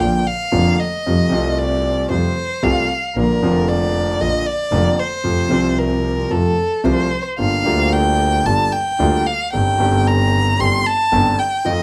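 The rhythm moves in a loose, rubato four-beat pulse, giving this tango a tense, passionate sway. A single bowed violin sits close and up front, carrying a solo through the full 11.8 seconds with vibrato, soft attacks, portamento and an expressive, warm tone. Beneath it, a concert grand piano supplies the accompaniment with a deep, smooth bass and a vintage colour, while one bowed double bass holds the low end with even, vibrato-laden notes. The harmony passes from Bb through Fadd9, F and Gm7 before reaching Cm/G. Light reverb surrounds the trio, vinyl crackle gives the recording an aged surface, and the passage is cut from a longer piece.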